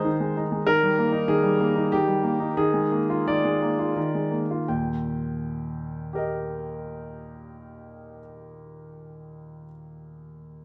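The recording opens on a concert grand piano alone, playing a graceful, cheerful classical-period sonatina in E-flat major in 3/4, with a rubato feel at a moderate 80-99 BPM. Its tone is clear and natural, with a deep bass, a long sustain and an up-front presence, spanning from Eb2 to G5. The opening phrase slows down through its first 4.7 seconds, moving from an Ab chord over an Eb bass to E-flat, then to a Bb7 over Eb, before settling back on E-flat at 4.7 seconds as a second section begins. Close, detailed microphones catch the instrument, set in a moderate recital hall reverb that lends a gentle bloom. This brief passage, cut from a longer piece, ends at 10.6 seconds.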